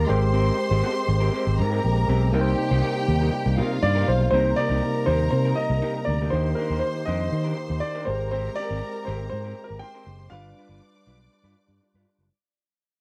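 A dry, close recording with a 1970s studio sound frames this driving, glamorous disco cut, taken from a longer piece and moving at 120 BPM in a straight 4/4 in C minor. Up front, a punchy fingered electric bass holds down the low end, while a lush, bowed string section carries a clear second line with vibrato. In the background, a barky tine electric piano runs lightly overdriven through a combo amp, a fat tonewheel organ sustains chords through a fast rotary speaker, and an electric guitar through a small old amp adds slightly broken-up, lo-fi picked accompaniment. At 3.8 seconds, a grand piano with short sustain steps forward to carry the melody. The harmony moves through Abmaj9, Cm7, Ebmaj7 and back to Abmaj9 before landing on G7, and the music fades out from 4.3 seconds to the end.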